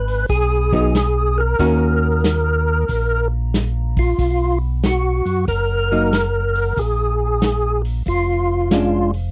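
A lightly overdriven, percussive tonewheel organ carries the bluesy, soulful melody in this short soul jazz organ trio cut in Eb minor at 93 BPM with a swung 4/4 feel, its fat tone marked by key click, chorus vibrato and a slow rotary speaker. A piping, scooped second organ handles the bass through its own slow rotary speaker, while a muffled vintage drum kit with a punchy kick and rolled-off top keeps time on hi-hat, kick and snare. A dark, clean hollow-body electric guitar joins at 0.7 seconds with picked accompaniment over Abm7, Ebm7, Bmaj7(no3) and Bb7#9, all set in a dry, close 1970s-style studio sound with light reverb.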